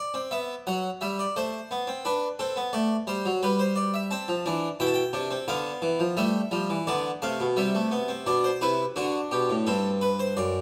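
A solo harpsichord, airy and plucked with a full Flemish-style tone from two sets of strings, sits up front in this elegant, joyful baroque-style three-part fugue, cut from a longer piece. Moving at 87 BPM in 3/4 with a straight feel, it ranges from F#2 to A5 over harmony that runs from G through Am, D7, C and G7 before settling on Am7/G near 9.7 seconds. A moderate recital hall reverb gives the instrument a gentle sense of space.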